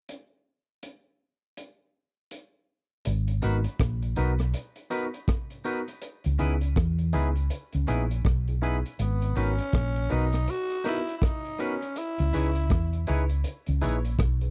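A swung, unhurried lovers rock reggae groove opens on a crunchy, saturated breakbeat kit of hi-hat, punchy kick and rim click, heard alone until a round, hollow-body fingered bass arrives at 3.1 seconds, followed moments later by a barky, lightly overdriven tine electric piano and twangy guitar stabs bathed in spring reverb. The harmony rocks between G#m7 and C#m7, giving this longing, smooth cut from a longer piece a gentle melancholy. At 9.0 seconds a raspy, growling tenor saxophone takes the melody with light vibrato and tape echo, all within a dry, close 1970s-style studio sound.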